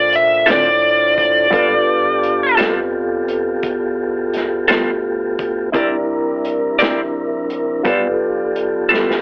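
A lo-fi, telephone-thin home cassette sound with light reverb frames this gritty, rollicking slow blues in 12/8 at 57 BPM, moving from Dm7 through G9 and C9. An overdriven, biting lead guitar states a brief melody only until 2.6 seconds, while a dark, worn baby grand piano, a soft, flute-like tonewheel organ with key click and a slow rotary speaker, and a compressed, fingered clean electric guitar with harmonic tremolo carry the accompaniment over a deep, sine-like saturated sub bass. A crunchy breakbeat kit with a punchy kick and rolled-off top enters at 0.1 seconds, and drums and piano both add a fill at 8.9 seconds.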